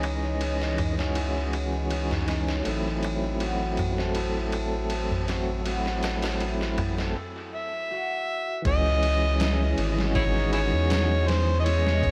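An echo-heavy mix with light reverb and a bed of vinyl crackle frames this short, cinematic trip hop excerpt in C# harmonic minor, moving at a melancholic 80 BPM in straight 4/4. A compressed, pitched-down sampler-style kit with a thumpy kick, medium-tuned snare and ride cymbal sits under a round, mellow analog bass that stays up front, while a clean tonewheel organ through a stopped rotary speaker adds tremolo, 12-bit sampler grit and tape echo to the accompaniment. In the background, a moody, full-bodied ambient pad holds sustained chords under a filter sweep, a fingerpicked concert harp rings out arpeggios, and a deep clay darbuka played with hard hands adds close, dry percussion until 7.1 seconds. The harmony shifts from C#madd9 to Am6 and returns to C#madd9 at 8.7 seconds, just after a brief break. An overdriven harmonica enters at 7.5 seconds as a gritty, punchy solo with light vibrato and tongue slaps, carrying the melody up front to the close.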